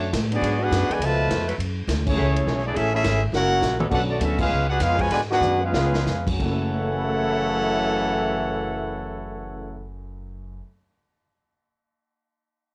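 Swinging in 4/4 at 176-206 BPM, this dramatic big band jazz fragment in F# minor sets a clear, smooth-topped trumpet section up front on the melody over a punchy, lightly vibrato-tinged trombone section's second line. A woody, thumpy pizzicato upright bass holds the low end, a distant, roomy drum kit with a boomy kick adds fills, and the full band punches out accents. A tight saxophone section sits in the background with sustained chords over G#m7b5, C#7alt and F#m9 until 3.9 seconds, where a warm grand piano with deep bass enters as the tempo slows through 6.4 seconds. Horns and piano carry a cassette-tape colour, and the whole home cassette recording sits in light studio reverb.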